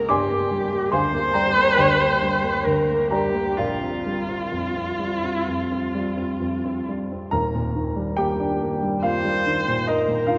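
The pulse moves in an unhurried 4/4 at 63 to 74 BPM, stretched and relaxed by rubato. This pastoral, dreamy impressionist classical duo in Eb major pairs a single bowed viola with a baby grand piano, both playing together throughout this 10.4-second fragment of a longer piece. The viola carries the melody with vibrato, a soft attack and expressive portamento, its warm tone sitting up front yet touched with a distant quality. The natural-sounding piano supports it across a broad span of its range, moving through Gm7 and Bb69 before settling on Ebmaj7 as a new passage begins at 7.3 seconds. The pair sound as if captured in a church or concert hall, where a long, wet cathedral reverb and a softened top end give the recording a hazy glow.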